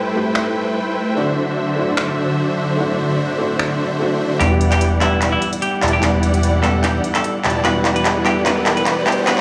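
This dreamy, lush future bass excerpt opens on a soft, felt-muted upright piano with digital delay, huge detuned supersaw chords riding a low-pass filter, and a veiled, con sordino string section bowing very quietly in the distance, all moving through Am7 and D9 in E minor at 148 BPM with a swung, half-time feel. A trap drum kit joins at 0.4 seconds with finger snaps, handclaps and crisp, up-front hi-hats. At 4.4 seconds the music shifts to Em9 and a build-up begins, bringing a drum fill, a filter sweep on the bright, airy supersaw, a fat, detuned analog bass with tube saturation on a low E, and a clean, picked semi-hollow electric guitar melody washed in spring reverb and tape echo. A very quiet riser enters at 5.7 seconds and carries the build to the end. The mix sits in a light small-room reverb, with the supersaw and drums up front and the strings far behind.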